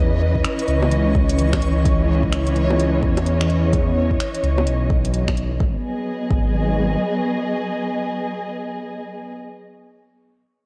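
A swung 128 BPM future garage groove in G# minor carries this nocturnal, rainy excerpt, where a deep, tape-warm electronic kick and an overdriven kit of bongos, finger snaps and smooth hi-hat play from 0.4 s under dark, woody bowed strings and a menacing detuned saw bass, both pumping with sidechain compression, while a faint reversed granular texture glimmers in the background until 5.6 s, all soaked in lush hall reverb with a cassette haze as C#m9 gives way to G#m7.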